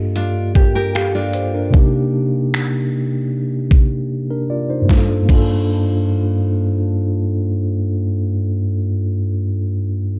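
A mellow tine electric piano opens this moody, longing contemporary R&B excerpt in G minor at 76 BPM in a straight 4/4. The piano is clean and up front, heard as if through its built-in speakers, and moves from Gm7 to Cm7. At 0.2 s a fingerpicked classical nylon-string guitar joins with arpeggios that carry audible finger squeak and tape echo, stopping at 1.7 s. A detuned 8-bit drum machine enters at the same moment, sampler-style and overdriven, with a thumpy kick, a medium-tuned snare, hi-hat, finger snaps and crash cymbal, re-recorded in a large room and sitting up front. After a short break, the harmony returns to Gm7 and the drums stop at 5.5 s, leaving the electric piano alone inside a dark digital ambience until the excerpt ends.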